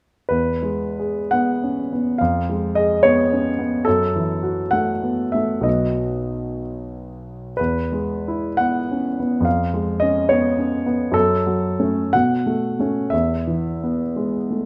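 Lyrical and hopeful, this short passage from a longer romantic character piece for solo piano unfolds in E major and 6/8. The tempo moves freely with rubato, ranging between 56 and 74 BPM counted in dotted quarters. A concert grand, heard from 0.3 to 14.7 seconds, carries the whole passage across a range from B1 to F#5, its tone warm and polished, with a deep bass and a present, up-front placement. Its notes have a short sustain, while a moderate recital-hall reverb adds a sense of space around them. The harmony moves through E, C#7/E#, F#m7 and B, returns to E and C#7/E#, then turns from F#m through Bsus2 to settle back on E at 13.1 seconds.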